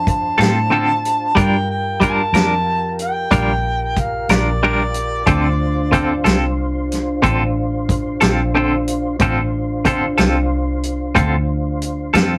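This slow blues in 12/8 at 61 BPM sits in D minor, and its mood is mournful and soulful, moving from Dm7 to Gm7 at 1.4 seconds and back to Dm7 at 5.3 seconds in this short cut from a longer piece. A mellow harmonica leads the melody with light vibrato and scooped notes in a jazz style, sounding distant and roomy with a touch of overdrive, and it falls silent at 6.3 seconds. Beneath it, a tonewheel organ holds sustained chords through a slow rotary speaker, lightly overdriven with chorus vibrato and a clear tone. A semi-hollow electric guitar, the most prominent part, enters at 0.4 seconds with bright, clean, picked, compressed accompaniment shimmering under tremolo. The foam-muted electric bass is dark, round and punchy, while a dry soul drum kit with a tight kick, a medium-tuned snare and a rolled-off top plays hi-hat, kick and snare. The whole take has the rough feel of a rehearsal room, set in a moderate small-room reverb.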